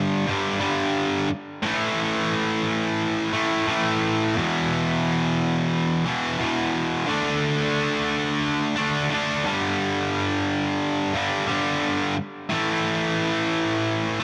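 A bright, double-tracked, high-gain electric guitar plays alone and up front for the full 14.2 seconds, picking heavy power chords through distortion and an analog delay in a driving rock groove at 88 BPM in straight 4/4, tuned to A4 = 439 Hz. The chords move from G5 to A5, E5 and D5, then return to G5 and A5, with the part spanning E2 to D4. A light reverb and digital ambience surround this short, heavy passage cut from a longer piece.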